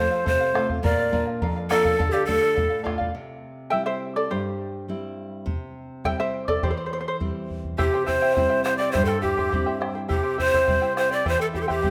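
A straight 2/4 pulse at 104 BPM drives this earthy, festive Andean folk excerpt. Breathy cane pan pipes with a soft, chiffy attack carry the melody up front, and a clear oboe with light vibrato plays a second line. Both give way to a shimmering, fingerpicked charango solo from 3.2 to 7.8 seconds before returning. Throughout, the charango's double strings and a fresh-stringed nylon-string guitar, with its audible finger squeak, supply the accompaniment over an F, Bb, Dm, C progression. A round bombo joins them but falls silent for part of the solo, and everything is set in a moderate scoring-stage reverb.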